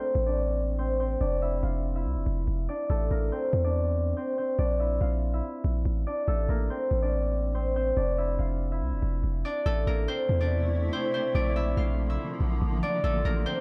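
A ringing, fingerpicked concert harp carries the melody up front through a low-pass filter sweep over the first 9.7 seconds of this melancholic, hard-hitting half-time hip hop cut at 142 BPM in A phrygian, anchored by a deep, mellow sine 808-style bass and joined at 10.4 seconds by a cloudy, detuned granular pad with built-in reverb, all set in a dry, gritty small-room sound.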